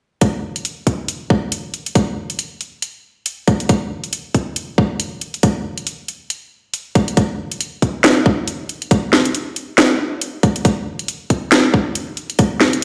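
Deep dubstep with a meditative, cavernous mood, this cut from a longer piece rests on a half-time feel with a swung sixteenth-note lilt. An electronic kick drum and a garage drum kit both come in at 0.2 s, each sitting up front in a layered, produced sound. The kick is tight and high-pass filtered, and it drops out at 12.5 s. The garage kit carries a cracking snare and warm hi-hats, running until 12.8 s. Small room ambience clings to both drum parts, while the whole recording sits in a wet echo-chamber reverb and sounds as though it is played on a big sound system in a bare room.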